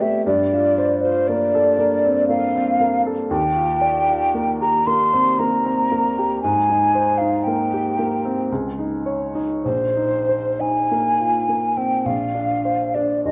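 A mellow, airy concert flute and a baby grand piano begin together in this luminous, dreamy impressionist duo, drifting in a rubato 3/4 at around 45-60 BPM in Eb major. The flute carries the melody with tongued notes and vibrato in a hollow, up-front tone, while the piano's open, long-sustaining chords move through lush harmonies from Gm11 to Ebmaj9, Abmaj9, Dbsus2 and Bb11 before settling on Bbadd9 at 12.0 seconds. A wet recital hall reverb with a 1.7-second decay surrounds this brief fragment of a longer piece.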